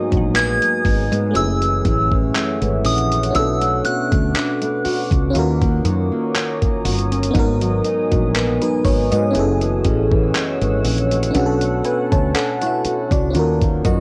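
Longing and sensual, this contemporary R&B excerpt moves at a slow 60 BPM in G# minor, with a lightly swung 16th-note feel and tuning set slightly below standard pitch. Entering together at 0.1 seconds, a gritty, overdriven sampler-style drum kit sits up front with a thumpy kick, hi-hat and handclaps, alongside a round, punchy fretless electric bass with a hollow, woody tone. A glassy FM electric piano carries the accompaniment with a bell-like attack, colored by chorus and phaser, while a fingerpicked steel-string acoustic guitar adds dark arpeggios with audible finger squeak. Beneath them, a deep, moody ambient pad holds detuned sustained chords with built-in reverb and sidechain pumping, and a very quiet mallet-like synth pluck adds percussive texture. A soft, pure synth bell sings the melody high above from 0.4 to 6.8 seconds, the harmony cycles through G#m7, F#m7, Bm7 and D#m7, and the electric piano closes with a brief fill at 13.3 seconds, all wrapped in the dry feel of a home cassette recording.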